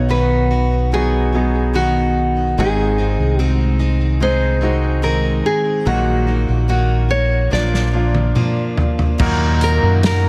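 Emotional and melancholic, this slow pop ballad excerpt at 73 BPM sets a dark, fingerpicked nylon-string guitar melody with audible finger squeak over brilliant, short-sustained grand piano accompaniment, bright arpeggios from a jumbo steel-string acoustic guitar with digital delay, and a round, punchy bass with an envelope filter, moving through B, Ab, Ebm/Bb and Bb before a loose, small-room drum kit enters at 7.5 seconds with a fill and a shimmering, retro pulse-width pad swells in with a slow attack in the background on Ebm at 9.2 seconds.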